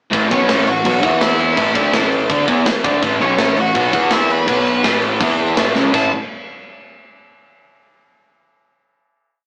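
Rebellious and rowdy, this short punk rock piece charges ahead with a double-tracked, crunchy power-chord riff on overdriven guitar, doubled by a fuzz-soaked picked bass playing driving eighth notes, while a tight metal drum kit with bright cymbals and a tight kick pushes a fast punk groove. From 0.3 seconds a nasal lead guitar with a parked wah and a dark overdriven tone plays hook-like motifs, partly doubled in octaves. A drum fill at 5.8 seconds sets up a final chord, all captured with the rough, saturated feel of a small rehearsal room heard through a little speaker.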